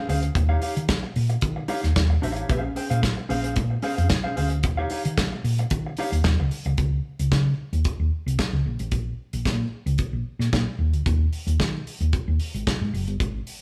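A moderate stone-room reverb surrounds this band playing live together in one room, in a sultry, danceable disco excerpt at 112 BPM in a straight 4/4. A mellow, dark, clean and compressed fingered electric guitar comps over Eb9 and Bbm9 until 6.7 seconds. Up front, a round, amped hollow-body short-scale electric bass and a warm, mid-forward soul kit with a tight kick, medium-tuned snare, hi-hat and a rolled-off top carry on alone after the chords give way at 8.7 seconds.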